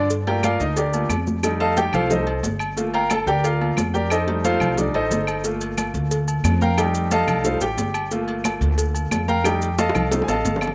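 A brilliant, up-front concert grand piano takes a passionate solo with slapback echo over a danceable 180 BPM salsa groove in G minor, alternating Gm7 and F7 above a dark, thumpy pizzicato upright bass with gut strings, while bright congas, round low-tuned cowbell and bongos, grainy maracas, ringing agogo bells and timbales with their own slapback echo, and woody claves fill out the dry, open-air percussion before a drum fill at 9.8 seconds.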